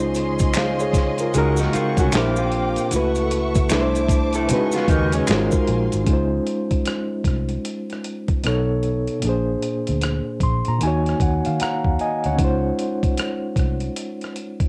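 A barky, lightly overdriven reed electric piano with fast tremolo opens this warm, relaxed neo-soul R&B excerpt in Db major at 76 BPM with a swung sixteenth feel, joined at once by a round, foam-muted fingered bass and a smooth bowed string section holding sustained chords through the first section. A gritty sampler-style drum kit with thumpy kick, fat snare, rim click and hi-hat sits up front, maracas and finger snaps fill that same opening stretch, and a dark, slightly broken-up electric guitar with vibrato carries a second line from 1.3 to 5.5 seconds. The electric piano plays a fill at 10.0 seconds as the chords move from Dbmaj9 through Cb9 and Ebm7, and the dry cassette home recording lends the piano, strings and guitar a tape-worn character.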